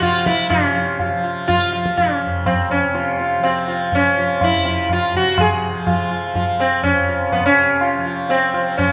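A plectrum-plucked sitar sits up front, its round, buzzing tone shimmering with sympathetic strings as it carries the melody in raga todi. Beneath it, a softly plucked tanpura holds a low drone, its own buzz lending a hazy glow to the bed of sound. A low-tuned tabla adds ringing percussion, heard close and dry against the other instruments. This short Hindustani classical passage, cut from a longer piece, moves in a straight five-beat cycle and carries an introspective, meditative mood. All three parts play together through the full 8.9 seconds, set in the long, wet reverb of a recital hall.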